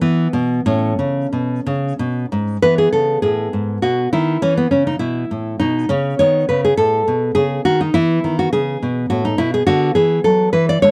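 A dry, close 1970s-style studio sound with light reverb puts a solo nylon-string guitar up front, its fresh strings ringing with a deep classical tone and an audible finger squeak. This serene, flowing baroque-style dance in E major moves in 3/4 at roughly 90-107 BPM with a rubato feel. The fingerpicked passage is cut from a longer piece, and its opening phrase returns at 2.6 seconds, moving from E through A and B7 and back to E before closing on Bm/D.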